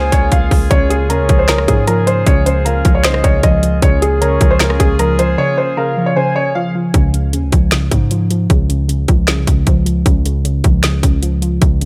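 A felt-muted upright piano carries a soft, intimate, vintage melody up front in this wistful, dreamy trap excerpt at 154 BPM in a half-time feel in Db major, joined by a round, octave-layered synth lead with chorus and digital delay in the background, sustained chords from a mellow brass ensemble, a warbly, lo-fi detuned pluck entering at 0.7 seconds, a punchy, heavy 808-style bass, and an electronic trap kit of hard-clipped kick, woody snare, metallic hats, rim clicks and finger snaps, before a break at 5.4 seconds gives way at 6.9 seconds to a second section in which only the drums, bass and pluck continue in a dry mix.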